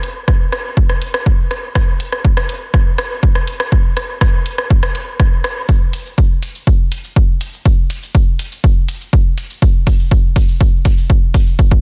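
Dark and hypnotic, this short techno excerpt at 122 BPM in straight 4/4 is a build-up carried entirely by drums, with a punchy, tape-warm analog kick sitting up front from 0.3 seconds. Beneath it, a layered, overdriven house kit of hi-hat, rim click and shaker, re-recorded in a large room and high-pass filtered, plays from the start and moves into a drum fill at 5.7 seconds. The sound is dry, dense and heavily limited.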